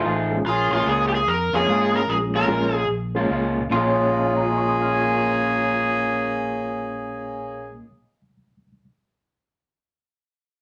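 Mournful and soulful, this short fragment of a longer electric blues shuffle rolls along with a swung feel. A picked electric guitar through a small old amp carries the riff from the start, its warm, slightly broken-up, compressed tone set against a round, dark fingered bass, while a reedy electric piano with tremolo sits clean and in the background. At 0.5 seconds an overdriven slide guitar steps up front with a warm, overdriven melody that ends at 2.9 seconds, as a horn section punches out jazz-style stabs that feel distant and roomy yet sit forward in the mix. From 3.7 seconds a second guitar through a small old amp adds its own line, sounding bright, twangy and slightly broken-up. A moderate studio reverb lends the whole a soft sense of space around a brooding minor-seventh harmony.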